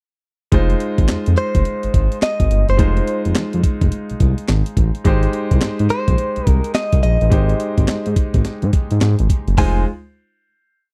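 New jack swing R&B in F minor at 106 BPM, with a confident, bouncy strut driven by a hard-swung, sampler-style breakbeat of gritty, thumpy kick, snare layered with handclaps, hi-hat and toms, under a smooth, gliding sawtooth-and-square synth bass that plays a swung synth-funk line with muted ghost notes and chromatic approach notes. A clear concert grand piano holds drop-2 voiced chords moving from Fm7 to Abmaj7 at 5.1 seconds, while a clean, direct-recorded electric guitar enters at 1.4 seconds with a free, picked melody touched by slapback echo. The dry, close sound recalls a 1970s studio, and the whole piece closes on a final Fm7 chord at 9.6 seconds.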